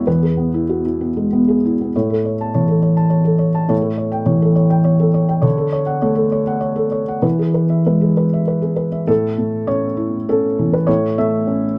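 A soft, felt-muted upright piano plays alone from the first moment in this tender, intimate fragment of neoclassical minimalist piano, drifting in a rubato 3/4 from E through A, A7, Dmaj7 and E before arriving on A at 9.1 seconds, its mellow, up-front tone spanning E2 to A5 inside a dark, moderately reverberant small room.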